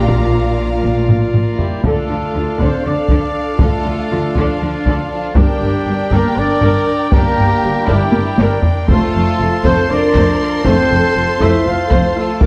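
Hard-stick taiko drums hit close and dry at the front of this relentless, heroic cinematic orchestral excerpt in D minor, driving an odd 7/8 metre at 238 BPM counted in eighths, with drum fills at 1.1 and 8.1 seconds. A rich, focused violin section carries the melody high above, while a second violin line, violas with expressive portamento, and cellos sit lush and vibrato-laden in the background. A bowed double bass section anchors the bass, as a mellow French horn section and the thick, romantic foundation stops of a pipe organ hold sustained chords underneath. From 1.6 seconds a dark, punchy trumpet section adds tight, distant stabs. The harmony moves from Bb to D minor, G minor and F, all set in a moderate recital-hall reverb with a dark, warm production.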